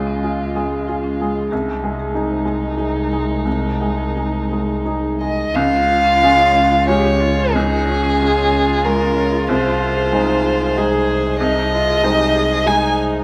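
Longing and fragile, this neoclassical piano-and-strings passage, cut from a longer piece, drifts in a rubato 3/4 at 85-95 BPM over Db and Ab/C harmony, with an up-front bowed violin singing the vibrato-laden melody while a distant, rich cello traces a second line, a bowed double bass holds the low end, a bright, slightly detuned upright piano with audible action noise supplies intimate accompaniment, and a dark, woody marimba played with hard mallets ripples arpeggios in the background from 0.1 s, all set in a moderate concert hall reverb.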